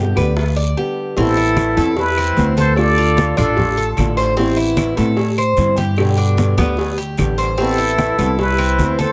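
A straight 4/4 groove at 150 BPM drives this nostalgic Cuban son and guajira in A minor, with low-tuned congas, tight high-tuned bongos and cowbell and woody claves sitting in the background, a raspy guiro scraping along, and a growly, thumpy pizzicato upright bass up front. A fingerpicked nylon-string guitar and the metallic, double-strung arpeggios of a Cuban tres fill the harmony. After a short break, a breathy, whispered trumpet with a wah-wah plunger mute carries the melody from 1.2 s, with an airy silver concert flute adding a second line, all caught close and dry with crisp detail.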